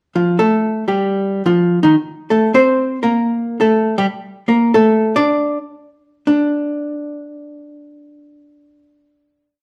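A lone miked and amplified archtop guitar, clean, dark and up front with a hollow-body tone, opens this short, relaxed and sophisticated jazz piece with a picked, swung bebop-style theme over Fadd9, Ebsus2, Am and Bbmaj7, slowing down from 3.0 seconds before settling on a final note at 6.3 seconds that rings into a large studio reverb until 9.6 seconds.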